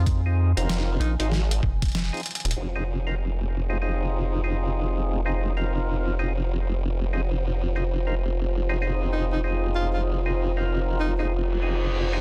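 A swung sixteenth-note groove in 4/4 drives this playful, funky glitch hop excerpt, with a gritty, pitched-down, thumpy electronic kick and a boom bap sampler-style kit of hi-hat and medium-tuned snare, both in studio reverb, the kit closing with a drum fill at 2.3 seconds. Lightly overdriven percussive tonewheel organ stabs with slow rotary speaker, pumping and dub echo run throughout over a hollow, bouncy, rubbery square bass and an up-front, detuned formant-sweep wobble bass with chorus. A nostalgic, lo-fi, warbling tape-like pad sits in the background, while a breathy, mellow tenor saxophone with scooped notes and dub echo returns at 9.1 seconds before an electronic reverse cymbal enters at 11.5 seconds in the dense, heavily limited mix.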